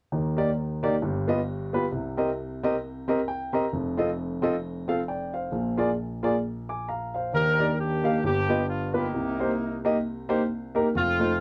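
A lightly swung 4/4 at 133 BPM carries this reverent, soulful gospel fragment in E-flat major, where an intimate, up-front grand piano with audible action noise plays the chords alone and adds a fill at 3.0 seconds, before a tight, punchy horn section with a smooth top and light vibrato takes the melody from 7.3 seconds, all heard in a small booth through worn, warbling cassette tape with drifting pitch.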